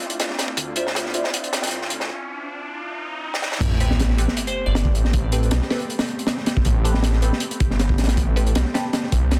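Drum and bass with a jungle edge, atmospheric and frenetic, where a crunchy, gritty breakbeat kit with a high-tuned snare and dark cymbals drives up front under a thick, menacing detuned saw bass entering at 0.6 s, while an airy, breathy pad hovers in the background with 12-bit grit, a nasal, phased dub chord stab with cassette-tape color and dub echo filter-sweeps through the build-up, a riser carries the break and drum fill into the drop at 3.6 s with an impact, and a glassy wavetable pluck flickers briefly with dub echo.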